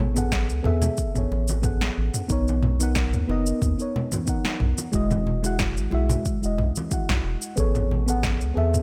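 A relaxed 91 BPM groove in 4/4 with a light 16th-note swing opens this short sunset chillout excerpt, its sunny, warm mood set in A lydian over a cycle of Amaj9, Bmaj9, Emaj9 and back to Amaj9. Ringing acoustic congas from a small room sound from the start, joined at 0.2 seconds by a layered deep house kit with a punchy snare, cabasa and toms, and at 0.3 seconds by a deep electronic kick, both re-recorded in a small room. Underneath, a round analog bass blends square, sine and triangle waves with wave-folding, sitting dark and up front with a fast attack and sustained notes. A mellow FM electric piano carries the chords, soft and full-bodied with a noise layer and decaying tones, coloured by chorus, phaser and tape echo. The whole passage rests in a digital ambience with a faint mains hum.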